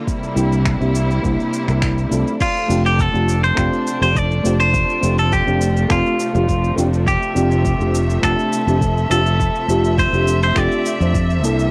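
Sunset chillout with a sunny, warm glow, cut from a longer piece, where lush bowed strings and a soft, round FM electric piano with chorus, phaser and tape wear settle over an overdriven deep house kit of cabasa, crash and finger snaps, a deep electronic kick and an up-front fingered electric bass, until a band accent at 1.8 seconds leads into a bright, clean semi-hollow guitar melody with analog delay from 2.4 seconds, all in a small, homely cassette room.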